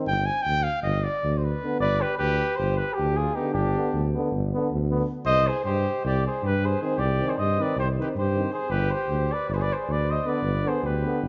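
Balkan folk brass music in a restless, virtuosic mood, this short cut from a longer piece moves at a brisk 313 BPM in eighths, grouped in 9/8 with a straight feel. A mellow trumpet carries a solo passage at the start, up to 1.8 seconds, before settling into a second line with light vibrato and a classical poise. At 1.8 seconds the flugelhorn enters up front with the melody, its tone warm and roomy, edged with light vibrato and a slightly distant quality. Underneath, a mellow tuba holds the bass with a soft attack and smooth top, sitting prominently in the mix. The trombone and euphonium fill out the accompaniment from the background, the euphonium carrying a vintage colour with vibrato. The harmony moves from G to C minor and back to G, all within a moderate recital hall reverb that gives the ensemble a rounded, dark-topped sound.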